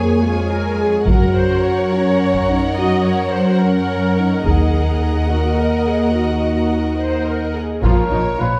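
Heard from further back in a reverberant recital hall, this relentless, dramatic cinematic orchestral excerpt in 6/8 at 71 BPM in Eb dorian sets a clear, distant violin melody over a smooth second violin line, focused violas, mellow French horn chords and a rich, up-front cello bass, with heavy-stick taiko drums and woody double basses joining at 1.1 seconds before a roomy solo trumpet adds stabs at 7.8 seconds.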